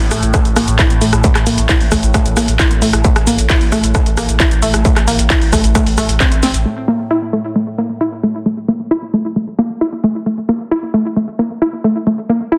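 A straight, driving 4/4 pulse at 133 BPM sets this hypnotic peak-time techno cut in motion, tuned to A4 = 442 Hz and taken from a longer piece. A distorted electronic kick leads the beat, backed by a layered techno kit of cracking snare, handclaps, rim click, shaker and warm hi-hats, with the hats and percussion pumping against the sidechain. Beneath them, a thick, saturated sine sub bass sits deep in the mix and pumps to the same sidechain. A resonant drone with moving overtones lingers behind it, slow to rise and long to fade, while a filter sweep runs through the opening passage. Up front, a warbly, dusty pluck blends triangle and sawtooth tones with a noise layer, detuned and lo-fi, its vintage colour shaped by chorus, tube saturation and digital delay. After a drum fill at 6.4 seconds, the pluck carries on alone from 6.7 seconds over an A5 chord, heard through a one-second room reverb and a dense, heavily limited modern master.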